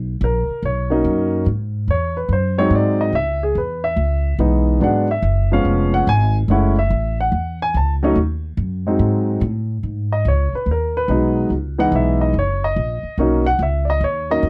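This is a jazz piano trio excerpt with a swinging, late-night mood, moving at 144 BPM in 4/4 with a triplet swing on the eighth notes. A plucked upright bass with a woody, thumpy tone sits up front and carries the low end from the very start. The concert grand piano enters at 0.2 seconds with the melody, its sound warm and rich in deep bass. The harmony starts in C# minor, passing through chords such as Bmaj7, C#m7 and F#m7. At 9.8 seconds the key shifts to G# minor and the piano takes a solo over the bass, ending on a Bmaj9. The close, dry studio sound has a 1970s character and a light touch of reverb.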